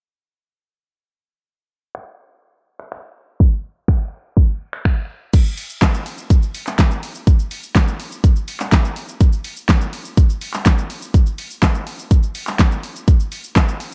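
Bittersweet and driving, this short pop cut moves at 124 BPM in a straight 4/4 feel. The only part is an electronic pop drum kit, entering at 1.9 seconds and running to the close at 13.9 seconds. Its layered, produced sound pairs a punchy kick and a fat snare with hi-hat, shaker, handclaps, finger snaps and a crash cymbal, all sitting up front with the character of a small room. A filter sweep colors the opening stretch until 5.3 seconds, where the second section begins. The overall production is dark and dry, with a low-pass filter rounding off the top end.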